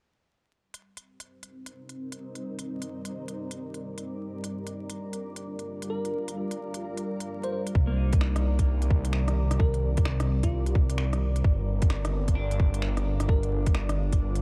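A dark, dry mix dusted with vinyl crackle frames this nocturnal, rainy slice of future garage, cut from a longer piece and moving at 130 BPM in C minor with a swung 16th-note feel. Crisp hats, finger snaps and rim clicks from a tape-warm electronic kit open the track. At 1.5 seconds a blurred, granular cloud pad joins, holding Cm9 and Gm7 chords through its own reverb and a pumping sidechain while a filter sweeps over it. From 5.9 seconds a sparkling, bell-like FM electric piano carries the melody in the background, warbling through chorus and dub echo. At 7.8 seconds the second section brings a tight, up-front kick and a menacing, saturated detuned saw bass that pumps and evolves with a filter swell. Short phrases of twangy, clean twelve-string electric guitar surface twice, roughened by 12-bit sampler grit and tape echo and shaded by a sweeping low-pass filter.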